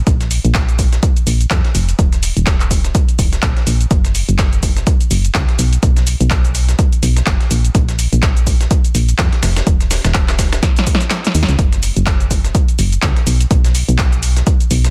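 A dry, dense and heavily limited mix opens this uplifting, euphoric piano house excerpt at 125 BPM, with a swung 16th-note feel. Up front, a punchy analog electronic kick sits beside a round, dark FM bass that pumps to the sidechain, while an analog drum machine adds cabasa, handclaps, hi-hat and a punchy snare, with a short room on its snare, claps and hats. A gritty, compressed sampler-style kit trails in the background with high-passed hats and snare. A drum fill arrives at 10.6 seconds, and the kick drops out from 11.1 to 11.6 seconds.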